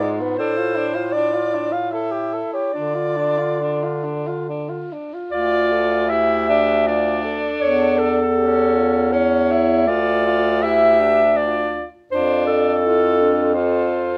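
Melancholic and solemn, this short excerpt from a longer classical piece for a single-reed quartet moves in an unhurried triple metre with a freely breathing rubato. A mellow clarinet carries the lyrical melody up front, while a dark alto saxophone, with light vibrato, a soft attack and a smooth top, sings a second line alongside it. A warm tenor saxophone with a vintage tint and its own vibrato supplies the accompaniment, and a clear bass clarinet, also sounding vintage and close, anchors the bass. The four instruments play together throughout, in a classical style, and the music settles into a new section at 5.3 seconds. The harmony leans on D minor colours, passing through A/E before settling on Dm/F, and a light reverb gives the ensemble a gentle sense of space.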